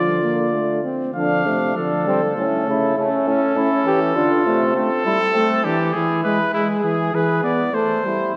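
A clear, soft-attacked trumpet carries the melody up front in this stately, joyful excerpt of a classical imitative canzona for brass ensemble in D minor at 100 BPM in 3/4, joined by a distant, roomy flugelhorn with a gentle vibrato on the second line, a close-miked trombone with light vibrato in accompaniment, and a warm, vintage-toned euphonium bass that drops out at 4.7 seconds and returns at 8.3 seconds. The ensemble is bathed in a wet concert hall reverb as the harmony moves from D minor through A major and back to D minor, then on to A minor and E major before settling on A minor.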